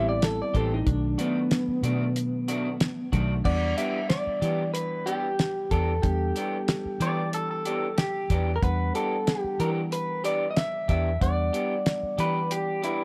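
Light reverb and small-room ambience frame this smoky, soulful straight-eighth soul blues at 93 BPM in E minor, where a compressed, up-front electric guitar through a small old amp carries the melody with a warbly pitch drift, a lo-fi, slightly broken-up guitar adds stabs, a barky, reedy electric piano comps through its built-in speakers, a round, punchy, foam-muted fingered bass holds the low end, a cloth-damped thuddy drum kit with fat snare, tight kick and dark cymbals enters at 0.2 seconds, and a bright, twangy third guitar picks up a second line at 7.0 seconds as the harmony moves from Am7 and B7#9 to Em7 at 3.4 seconds.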